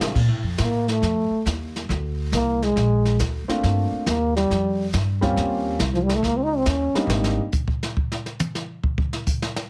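Small-group swing and bop jazz at 138 BPM with a playful, swinging lilt, heard through a heavily compressed, radio-like sound with light reverb. A breathy, close-miked trombone solos with light vibrato over woody, growly pizzicato upright bass and a mellow concert grand piano that comps from 3.5 seconds, while a brushed kit with dark cymbals and a boomy kick opens with a fill. The drums launch a short solo at 7.1 seconds, carrying on alone once bass and piano stop at 7.4 seconds, and run to the cut at 9.7 seconds.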